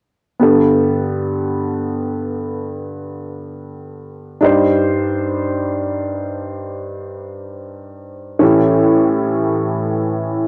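Emotional and hopeful, this short pop fragment in G major unfolds in free time on a clear upright piano that sounds woody, worn and slightly detuned, sitting up front with a cassette-tape character. The piano plays accompaniment from G2 to C5, moving from Gadd9 to Cmadd9/G at 4.4 seconds and arriving on A7 at 8.4 seconds. A moderate booth ambience frames this homemade cassette recording, which is cut from a longer piece.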